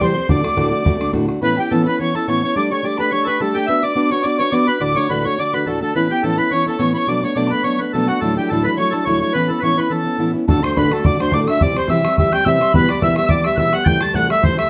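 A fast, lightly swung reel rhythm in 4/4 drives this bright, lively Celtic folk excerpt, cut from a longer piece. Up front, a reedy, rich accordion carries the melody. A mellow tin whistle sits in the background on a higher second line, with an airy tone, soft attack and expressive vibrato. A full-bodied, fingerpicked jumbo steel-string guitar, plugged in and also up front, supplies the accompaniment. A damped, tight bodhran sounds distant in a large room: it plays only until 1.4 seconds, then returns at 10.5 seconds, when the harmony moves to a new centre built on D and C chords. Light reverb and close, detailed microphones give the ensemble a clear, present sound.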